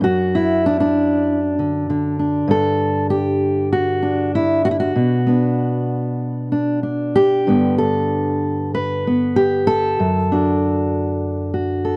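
A fingerpicked steel-string acoustic guitar plays alone for the full 12 seconds of this peaceful folk excerpt, its dark, full-bodied tone sitting up front with audible finger squeak as it moves through D/F#, Em11/G, Bm and G in D major at a loose, rubato 97 BPM in 4/4, tuned to A4 = 439 Hz, all captured in a dry, close 1970s-style studio sound with light reverb.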